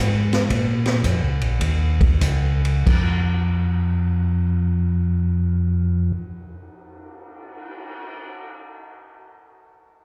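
A mellow tonewheel organ carries the bass line from the start, its round, dark tone sitting up front with vibrato, audible key click and a slow rotary speaker. This short cut from a longer soul jazz organ trio performance has a bluesy, late-night mood in 4/4 with a swung eighth-note feel. The tempo moves between 89 and 119 BPM and slows down over the first 2.9 seconds. A swinging big-band drum kit enters at 0.3 seconds with a natural, acoustic studio-room sound: a high-tuned snare, punchy kick, hi-hat, ride, crash and cymbal swell. The organ drops out at 6.1 seconds, leaving the drums to carry on until 8.1 seconds. The performance comes from a live gig heard through the venue's PA, with recital-hall reverb around it.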